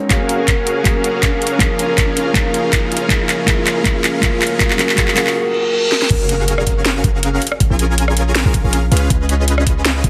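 Lush and bright, this future bass excerpt opens with a build-up in which a soft, felt-muted upright piano and a woody, hollow kalimba melody pump with sidechain and digital delay. Alongside them play a huge, detuned supersaw riff, a knocking electronic kick, and a trap kit of sharp snare, metallic hats, crash, handclaps and rim clicks playing a drum fill, along with a very quiet riser and reverse cymbal. At 6.1 seconds the drop lands on an impact as a deep, boomy 808-style bass enters up front and the piano and kalimba stop, while the supersaw and drums carry on in moderate digital room reverb with a heavily compressed, radio-like sound.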